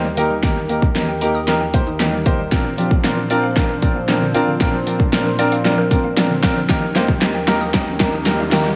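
A clear, up-front concert grand piano, a shimmering, detuned pulse-width pad and a woody, mallet-like synth pluck that ripples through arpeggios in the background open this summery, carefree dance-pop excerpt together in Eb major at 115 BPM. All three pump with the sidechain, and the piano and pluck carry slapback echo while the pluck also has chorus, phaser and digital delay. A punchy, fat-snared electronic drum kit drives a build-up and drum fill over Eb, Bbadd9 and back to Eb, with distant, crisp group handclaps arriving at 7.2 seconds and a faint riser at 7.7 seconds, all set in a lush hall reverb with a big arena sound.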